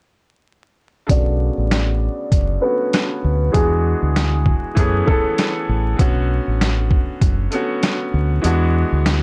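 This dark boom-bap hip-hop excerpt features a gritty, sampler-style drum kit, its thumpy kick, medium-tuned snare, rim click and hi-hat sounding compressed and pitched down, as if re-recorded in a small room and set up front. At 98 BPM in 4/4 with a 57% swing on the sixteenths, the groove sits in B dorian, moving through Bm7, E9 and F#m11 chords. A deep, round dub bass, fingered on electric and played direct and amped, sits up front beneath a bright grand piano whose brilliant, intimate accompaniment carries audible action noise, long sustain and a cassette tape coloring. A woody upright piano plays the melody with tape echo from 1.1 to 6.0 seconds, under a filter sweep, before dropping out as the second section begins. Light reverb and vinyl crackle wrap the production in a dusky haze.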